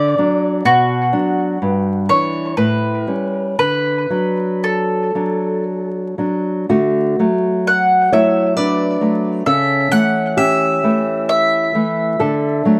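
A bright, woody mandolin carries the lyrical melody up front, its picked double strings shimmering through plate reverb and analog delay, in this serene romantic duo set in a lilting three-four with free, rubato phrasing. A small, fingerpicked nylon-string guitar sits equally close, accompanying through D, Bm, Em7/G and A7 before coming home to D, and the same phrase returns at 6.7 seconds. A wet studio room and a layer of vinyl crackle lend an aged patina to this short passage drawn from a longer piece.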